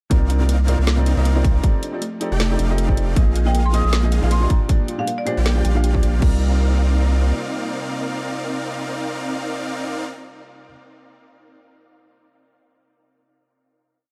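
Future bass at 157 BPM in half-time with a dreamy, emotional pull in C minor, built on a drop of huge detuned supersaw chord stabs that throb in tempo and a thick saturated sub bass, both pumping, over a hard-clipped electronic kick, alongside a trap kit of woody snare, metallic hats with rolls and crash, while a soft felt-muted upright piano plays dotted-rhythm chords, a round, tine-like thumb-piano-style synth pluck spins an eight-step arpeggio and a very quiet breathy pad hangs underneath, with a woody, hard-mallet marimba adding short phrases from 3.5 to 5.8 seconds before the drums fall away and the remaining parts resolve into a final Cm11 chord at 6.2 seconds, all in a dark, dry, tape-warm mix.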